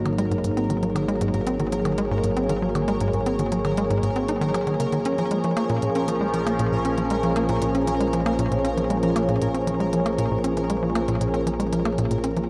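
Ambient, sequencer-driven space music in Bb minor, this mysterious, expansive excerpt moves at 117 BPM in a straight 4/4, tuned slightly flat to A4 = 436 Hz. A bright, resonant pad sits up front with detuned sawtooth and sine tones, its filter swell and slow attack carrying sustained chords from Ab9sus4 to Bbm7 at 5.1 seconds, dressed in chorus and shimmer reverb. Beneath it, a low analog drone warbles with vintage pulse-width modulation and tube saturation, while a tight, punchy sequencer bass riff drives forward with a nasal filter pluck, its decaying square and sawtooth notes echoed by delay and shimmer. High above, a pulsing, tempo-synced texture of unison triangle tones adds a gated shimmer, and faint electronic percussion blips with clicky hats tick through delay. The whole piece is bathed in a wet plate reverb with a 2.3-second tail, giving the cut from a longer work a floating, cavernous depth.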